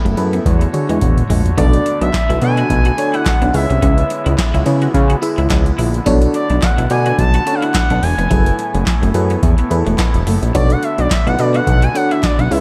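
The recording sounds dreamy and soaked in plate reverb, with a booming analog drum machine and a fat, thick bass sitting up front. This is a funky, slick excerpt of early-eighties boogie funk in B dorian at 107 BPM, its sixteenths lightly swung, and it moves through Bm9, C#m7 and F#m11 chords. The drum machine has a deep kick, crisp snare, metallic hats, handclaps and toms, with a short room on the snare, clap and hats and a tape-warm edge, and it plays a fill from 0.5 to 1.6 seconds. The nasal, detuned sawtooth bass carries a filter sweep, while a glassy FM electric piano with a bell-like attack comps through chorus and phaser, and a soft-reed pipe organ holds sustained chords on an oboe stop with tremulant. In the background, a twangy, slightly broken-up electric guitar plays a fingered riff through ensemble chorus. At 1.6 seconds a smooth, mellow sawtooth lead enters with the melody, its vibrato and portamento colored by chorus and tape echo.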